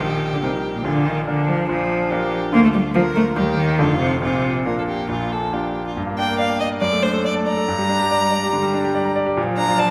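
A rich, vibrato-laden solo violin sings the smooth, even melody up front in this cheerful, graceful and quick classical-period movement for piano trio, heard as a cut from a longer piece. A clear, bowed cello carries the second line beneath it, while a bright, present concert grand gives polished accompaniment with brilliant upper notes and deep bass. The music turns to a minor-key passage at 6.0 s, and the recording has a lingering hall reverb along with a faint mains hum.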